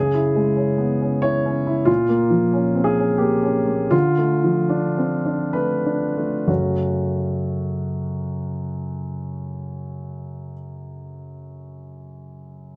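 In a rubato 3/4 that moves between 63 and 95 BPM and slows from 0.9 to 6.5 seconds, this short excerpt of neoclassical minimalist piano feels intimate and wistful. A solo concert grand carries it alone, warm and up front, with deep bass, an open tone and long sustain across a range from F#2 to C#5, set in light reverb. The harmony passes through C#m, A#m and Dm before a new section arrives on F#m at 6.5 seconds.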